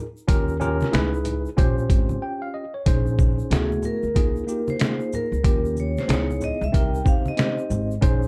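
Mellow and cool, this jazz-hop fragment rides a swung groove from a gritty, pitched-down sampler-style drum kit with a thumpy kick, set up front, while a woody pizzicato upright bass and a worn, slightly out-of-tune tine electric piano, lightly overdriven and bathed in plate reverb, move through jazzy chords like Eb9 and Dbm7. Bright egg shaker and hard-hand congas sit low in the mix. After a short break at 2.2 seconds, a ringing vibraphone with slow motor vibrato takes a solo from 3.5 seconds, all within a dark, lightly reverberant production.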